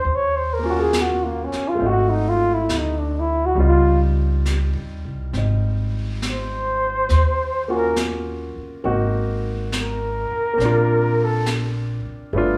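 Tender and late-night in feel, this slow jazz ballad at 68 BPM swings in 4/4, drifting from Ebm9 through Dbmaj9#11 to a closing Bbadd9. A breathy, whispered flugelhorn carries the solo melody up front with vibrato, scooped notes and a soft attack, falling silent at 11.5 s, while a warm, natural-sounding baby grand piano accompanies lower in the mix and a woody, growly pizzicato upright bass stands close. Brushes on a high-tuned snare and hi-hat sit quietly behind, and the band plays live together in one room, wrapped in a moderate studio reverb.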